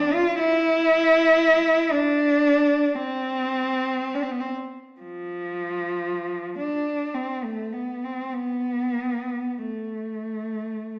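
Rubato in 3/4, the pulse drifts freely between 47 and 60 BPM in this mournful, lonely classical fragment in A minor, cut from a longer piece for unaccompanied cello. A single bowed cello, dark and up front with a soft attack, sings from F3 to F4 across the full 11.0 seconds, its vibrato and portamento shaping expressive lines with a smooth top. A wet recital hall reverb of 1.3 seconds surrounds the player with a church or concert-hall space, heard through a small-speaker sound.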